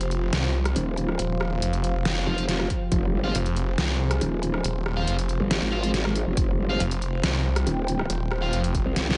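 A half-time 4/4 pulse at 139 BPM drives this menacing, aggressive slice of heavy wobble dubstep in F minor, cut from a longer piece and built on a single Fmadd9 chord. Up front, a dubstep drum kit of hi-hat, rim click and deep snare pairs with a punchy electronic kick drum, both layered and re-recorded in a large room, with a drum fill arriving at 9.0 seconds. Two basses dominate the low end: a snarling distorted saw bass, detuned and carved by a moving notch, and a growl bass, entering at 0.8 seconds, that wobbles through a formant filter with saturation, chorus and overdrive. From 2.3 seconds, a bright, double-tracked electric guitar adds overdriven picked stabs thrown into dub echo. Beneath it all, a very quiet lush unison pad holds thick sustained chords with chorus and phaser, while a warbling, nostalgic, lo-fi tape-like pad sits in the background with sidechain pumping and built-in reverb. 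The mix carries light reverb and a digital ambience, with its top end kept below 10.5 kHz.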